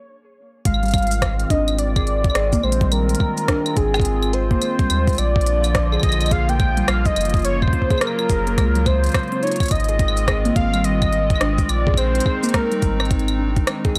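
A dry, gritty hardware sound with a digital ambience frames this wistful, playful IDM excerpt, cut from a longer piece and set on a swung sixteenth-note feel. A velvety synth lead opens alone at 0.0 seconds, up front and smooth, its detuned sawtooth tone thickened by a sub octave, vibrato, chorus and tape echo. At 0.7 seconds the rest of the arrangement enters: a hollow, flute-like pad holding sustained chords with a slow attack and long release, and a harp-like pluck ringing out arpeggios in the background, softened by chorus, tape echo and a filter sweep. Underneath, a deep, round sine sub bass with tube saturation anchors the harmony as it moves from Ab6 to Bb, Gbmaj7 and back to Ab6. A soft, tape-warm electronic kick and a kit of claves, crisp hi-hat, rim click and shaker sit in a small room reverb.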